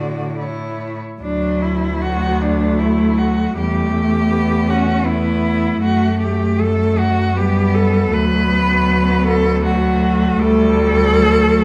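Warm and serene, this classical excerpt for cello ensemble moves in an unhurried 3/4 at 78 BPM, with a flexible, rubato feel in D major. Four bowed cellos, each a single player with vibrato, sound together for its full 11.6 seconds. The melody cello carries a bright, focused tone in the upper register, placed up front yet with a distant quality, while a second cello sings a rich inner line beneath it from further away. A smooth, even accompaniment cello sits close, and the bass cello anchors the low end up front. The harmony travels from A to D, through A over E and a G major ninth over F#, returns to D, and comes to rest on an A seventh over D, all wrapped in a dark production and a wet recital-hall reverb.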